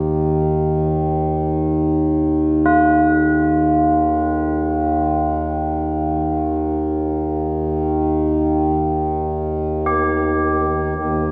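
Bathed in a lush hall reverb with a hint of small-room ambience, this brief excerpt of spacious, calm world meditation music sets a reedy, breathing pedal harmonium drone close and up front beneath the mellow, solemn ringing of tubular bells struck with a padded hammer, both sounding together for the full 11.3 seconds.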